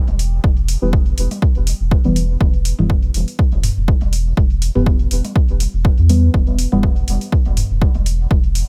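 A punchy, overdriven analog kick sits up front in this deep, nocturnal dub techno excerpt in E minor at 122 BPM, with a lightly swung 16th-note feel and a smooth, dark pure sine sub bass carrying sidechain pumping. Metallic, layered hi-hats carry their own overdrive, while overdriven electronic toms sit in the background, pumping and trailing dub echo. From 0.8 s to 6.8 s a soft, wave-folded chord stab on E minor adds chorus, phaser and dub echo, all in a dry, echo-heavy mix.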